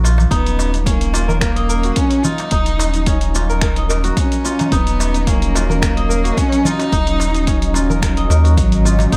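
Organic downtempo at 109 BPM in Eb minor, this mystical, earthy excerpt rests on a single Ebm7 chord, with a deep, round sine sub bass sitting up front and pumping against an overdriven, punchy electronic kick that joins at 0.3 s alongside a gritty, tape-warm sampler-style kit of cabasa, finger snaps and hi-hat with a lightly swung 16th feel. A ringing, fingerpicked kora spins arpeggios through a digital delay while a crisp metal-shell darbuka ticks in the background. A distant bowed cello carries the melody with vibrato and portamento through tape echo over a smooth, warbling vintage pad, all set in light reverb.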